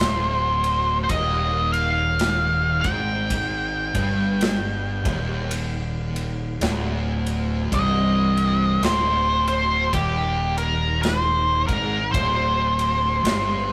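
Heard from the first second, an octave-fuzz lead guitar sits up front, its dark, distorted tone shaped by wah as it carries a melody between G4 and G5. This is heavy, sludgy stoner and doom metal at a crawling 54 BPM in 4/4 with a swung eighth-note feel, resting on a single C minor chord. Beneath the lead, a pair of thick fuzz guitars grind out a low picked riff in the background, one of them warm-toned. A growling fingered electric bass adds a bright, overdriven, punchy low end. A big acoustic rock kit keeps time with a solid kick, medium-tuned snare and crisp ride cymbal. The rough rehearsal-room sound carries a wet, small-room reverb over this 13.7-second fragment of a longer piece.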